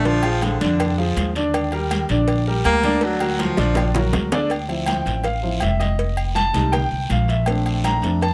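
Afro-Cuban jazz at a fiery, driving 162 BPM, cut from a longer piece, where a punchy, forceful baritone saxophone with vibrato solos up front until 4.0 seconds before a warm concert grand piano takes the solo from 4.5 seconds as the key settles into D minor, all over a growly, woody pizzicato upright bass, a raspy guiro, ringing agogo bells and timbales, a drum fill at 3.6 seconds, and background congas, cowbell and bongos, captured dry and close.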